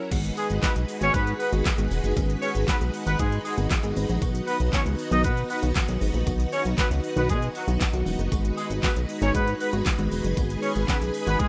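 Over a straight dance-pop drop driven by a layered electronic kit with a knocking kick, fat snare, crisp hats, handclaps, shaker and crash, this upbeat, euphoric excerpt sits on a G#m7 chord as a glossy, saturated chorused synth bass and a soft, round background pluck pump under sidechain, shimmering vintage string-machine violins sustain chords, a very quiet jingly tambourine adds sparkle, and a clear, tight horn section with light vibrato and octave doubling carries the melody up front from 0.4 seconds, all in a rough home-demo mix with digital ambience.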